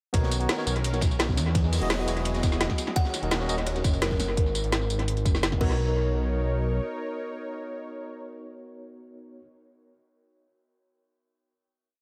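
An echo-heavy mix sits in a light studio reverb, giving this short, complete liquid drum and bass piece a lush, inviting glow at 170 BPM in straight 4/4 and B major. A tight electronic kick carries a two-step pattern, joined by a rolling kit of woody snares, metallic hats, tambourine and crash. Beneath them sits a looped, gritty breakbeat with edits, its dark cymbals and high-tuned snare rolled off and tucked into the background. Up front, a deep, rumbling detuned saw bass plays long gliding notes, while a clean tine electric piano with tape echo jabs syncopated chord stabs over a thick, nasal unison pad that pumps under sidechain. The harmony moves from Bmaj9 through Emaj9, D#m7 and F#sus2 before landing back on Bmaj9. A hollow, woody kalimba enters at 3.0 s with a bright eight-step arpeggio, the breakbeat drops out at 4.3 s, the remaining drums stop at 5.7 s, and a final hit arrives at 5.8 s as the piano and pad ring on.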